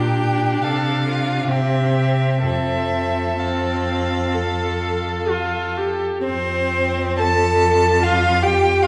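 Tender and warm, this short excerpt from a slow romantic string quartet movement in F major unfolds in 4/4 at 61-76 BPM with a flexible rubato feel, its brief opening passage returning at 6.3 seconds. A focused, distant violin carries the melody with vibrato while a second violin sings a smooth, even line above it, and the viola adds rich, smooth accompaniment. Underneath, a clear cello sits up front on the bass, all heard from further back in a reverberant recital hall.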